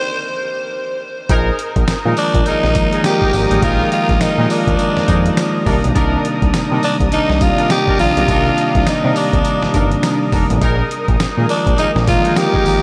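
Punchy and bouncy, this new jack swing excerpt opens with a growling, raspy tenor saxophone alone up front. At 1.3 seconds it is joined by a fat, detuned analog bass, a dusty, thumpy sampler-style drum kit with tambourine, tight vintage horn stabs in the background and a smooth, chorused analog pad. A bell-like tine electric piano enters at 2.0 seconds, all floating over Bb7sus4 and Cm9 chords in a dreamy mix soaked in huge reverb.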